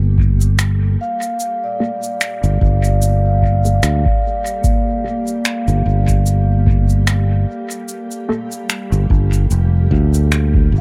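A growly, up-front fingered electric bass anchors this hazy, deep ambient dub fragment in G minor at 74 BPM with a light 16th-note swing, alongside a tape-warm electronic kick, overdriven electronic cabasa and finger snaps with dub echo, ringing soft-mallet vibraphone arpeggios through tape echo, muted, detuned filtered dub chord stabs with phaser, chorus and dub echo that drop out at 8.5 seconds, and a cloudy granular pad that fades in beneath on a sustained Gmadd9 chord.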